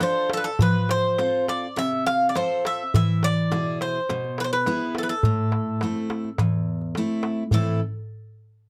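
A close, dry 1970s-style studio sound with a light reverb frames this short excerpt of Greek folk music from a bouzouki band, cool and moody in A harmonic minor. In a straight 4/4 at 104 BPM, the tempo speeds up over its full length. The bouzouki carries the melody up front, ranging from A4 to F5, its metallic double strings picked with a bright edge and some strings doubled in octaves. A full-bodied dreadnought steel-string guitar, also picked and up front, accompanies from E2 to A4 through a progression of Dm, F, E and Am. A metal-shell darbuka played with soft hands adds crisp, close percussion. All three parts drop out at 7.8 seconds.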